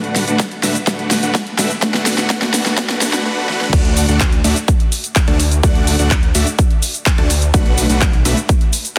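A dense, heavily limited modern master set in a lush hall reverb carries this anthemic, euphoric festival progressive house excerpt at 126 BPM in D major, moving from Bm7 to D and back to Bm7. A huge, airy supersaw riff, detuned and sustained with sidechain pumping, dub echo and vibrato, passes through a filter sweep during the opening build-up, while a big-room drum kit with a huge overdriven snare, handclaps, hi-hat, cabasa and crash cymbal plays a fill alongside a punchy, up-front electronic kick. At the drop at 3.7 seconds a thick, saturated detuned saw bass with chorus and sidechain pumping joins in, filling out the low end under the riff.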